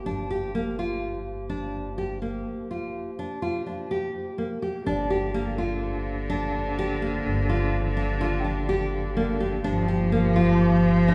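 A mellow woodwind section holds soft-edged sustained chords in the background while a pizzicato upright bass anchors a low, woody root, and a fingerpicked nylon-string guitar sets up arpeggios almost at once, up front and full-bodied, with audible finger squeak. This contemporary chamber piece moves in an uneven 5/4 with a straight feel, and its mood is hypnotic yet urgent. At 4.9 seconds a single bowed cello enters up front with a rich, focused tone, smooth on top and shaded with vibrato, singing a second line. At the same moment a small celesta adds a delicate, bell-like shimmer in the background, sweet-toned and played with medium felt hammers. The whole ensemble sits in a reverberant recital hall, heard from further back in the room, and the passage is cut from a longer piece, ending at 11.1 seconds.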